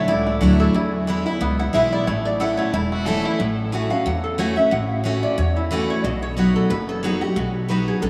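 A brisk bluegrass drive at 181 BPM in 4/4, swung on the eighth notes, sets a joyful, virtuosic tone in A major for this short cut from a longer piece. A bright picked dreadnought steel-string guitar sits up front with audible finger squeak, while an upright bass with gut strings thumps out a woody, dark low end. Fingerpicked banjo, twangy and percussive, shares the melody with a nasal, metallic lap resonator guitar until the banjo drops out at 3.4 seconds. A clear, earthy fiddle with light vibrato slips in very quietly for a brief second line from 2.9 seconds. From 3.4 to 8.1 seconds the resonator guitar takes a slide solo with a steel bar over chords moving from A6 to B, all of it bathed in a vast, echoing cathedral reverb.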